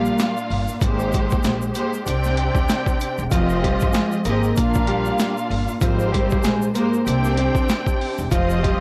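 Dry, gritty hardware sound with vinyl crackle and light reverb frames this dark boom-bap hip-hop excerpt at 96 BPM in C minor, where an overdriven, sampler-style drum kit with a thumpy kick sits up front beside a lush, bowed string section tinged with cassette tape and portamento, a mellow, clean electric guitar with chorus carries the melody, a woody pizzicato upright bass holds the low end, a grainy egg shaker sits in the background, and a tight jazz-style horn section adds stabs through analog delay from 3.3 s.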